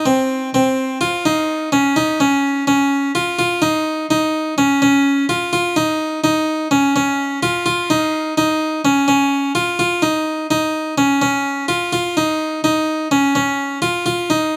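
A nasal, bright harpsichord in the French style plays alone and up front from 0.0 to 14.6 seconds, its plucked lines held within a narrow compass from C4 to F4. This brooding, driving progressive instrumental excerpt moves in 9/8 with a straight feel, tuned to A4 = 441 Hz, and shifts into a new section at 3.2 seconds. Close, detailed microphones and light reverb keep the sound intimate and clear.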